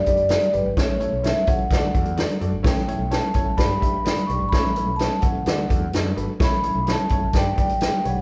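Uptempo 1960s-style soul in A mixolydian at 128 BPM, this short, joyful excerpt moves in a straight 4/4 feel with an uplifting glow. A vibraphone played with soft mallets carries the melody, its close-miked, dry tone ringing and full with the motor off. Beneath it, a clear upright piano supplies accompaniment with a woody, slightly detuned and worn character, while a mellow fretless electric bass adds a dark, round low end from 0.1 seconds. The swinging big-band drum kit, also entering at 0.1 seconds, sits up front with a punchy kick, a medium-tuned snare and hi-hat, its acoustic sound roughened by vintage 12-bit sampler grit. The harmony cycles through G, A and D, and the band plays live together in one large studio with a moderate reverb that gives the performance a natural, roomy feel.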